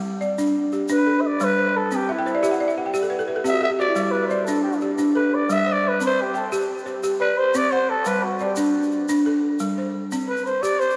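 A woody, buzzing balafon struck with rubber mallets opens this hypnotic West African string and xylophone excerpt, rolling arpeggios in G major over a straight 12/8 pulse at 117 BPM, with a grainy, bright tube shaker ticking quietly underneath. At 0.9 seconds a growling trumpet takes the solo, its dark, raspy, breathy tone carrying a jazz feel, while the balafon adds a fill between 2.1 and 4.0 seconds. The harmony sways between G and C, and a long cathedral reverb gives the church-like room a deep, lingering tail.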